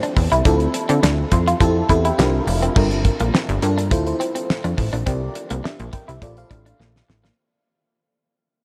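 A straight 4/4 groove at 104 BPM drives this slick, funky slice of early-eighties boogie funk in G dorian, cut from a longer piece. The damped 70s drum kit sits up front with a fat snare, tight kick, hi-hat and crash, its dry, rolled-off top giving the beat a padded feel, and it closes with a fill from 6.8 seconds. A plucky analog bass enters at 0.2 seconds, punchy and up front, its sawtooth and pulse-wave tone snapping with a fast filter pluck before decaying. A clean, compressed electric guitar picks out a riff through a lush chorus, while an FM electric piano layered with a soft pad comes in at 0.5 seconds, its detuned, chorused tone adding a dreamy shimmer and playing a fill between 1.0 and 2.8 seconds. Chords move from Dm9 through Fmaj9 and C9sus4 to Gm9, Dm7, C9 and Bbmaj7, and the mix is soaked in a huge ambient reverb while the music fades out from 2.8 seconds onward.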